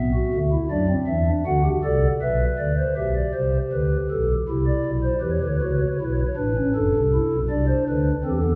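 A pipe organ on a soft, hollow stopped-flute register carries this baroque-style three-part fugue alone, its mellow, romantically voiced lines sitting up front in a wet concert hall with a long two-second reverb tail. The mood is solemn yet driving in a steady triple metre, the harmony turning through minor and dominant-seventh colours before a new section begins at 3.0 seconds and moves on through major chords, a dominant seventh and a closing minor chord. This is a short excerpt cut from a longer piece, ending at 8.6 seconds.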